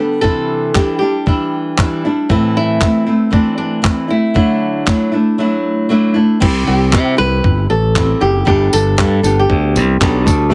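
A fingerpicked flamenco guitar carries the melody in this easy-going, sunny acoustic pop excerpt at 117 BPM with a light sixteenth-note swing, over a bright, fresh-stringed nylon-string guitar moving through Cadd9, Am and Dadd9. A gritty sampler-style drum kit with a thumpy kick, handclaps, tambourine and crash sits up front, and a growly, punchy fingered electric bass joins at 6.4 s as the chords shift to C and Gadd9. A soft, felt-muted upright piano sounds an A3 at 10.5 s, and the whole mix carries light reverb and a heavily compressed, radio-like sound.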